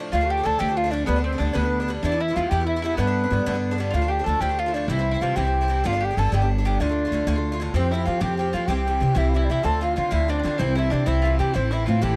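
Celtic folk jig in 6/8, dark yet lively and driving and cut from a longer piece, in which a pure, wood-toned wooden flute with vibrato and crisp attack carries the melody over a metallic, picked Irish bouzouki that starts at 0.0 seconds, while a soft-attacked duduk with scooped notes and a double-strung mandolin tucked in the background add second lines, and a growly pizzicato upright bass sits up front, the whole heard in a dry, close 1970s-style studio sound.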